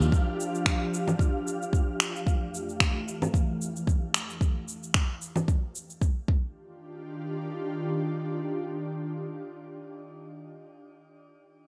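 This relaxed sunset chillout fragment opens on an ethereal, detuned synth pad holding major-ninth chords under a filter sweep, together with a breathy, wind-like tuned noise layer and a light swing of electronic shaker, finger snaps and congas. A deep, layered electronic kick arrives a moment later and sits up front beside the hand percussion, which carries a small-room ambience and a touch of gated reverb. The pad is slow to bloom and slow to fade, coloured by ensemble chorus, shimmer reverb and a faint vintage 12-bit sampler grit. The wind texture drifts away at 2.3 s, the hand percussion stops at 6.1 s, and the kick drops out at 6.4 s, leaving the pad to sustain on its own until 10.4 s. A moderate plate reverb and bright 1980s-style digital sheen give the whole fragment a glossy, unhurried glow.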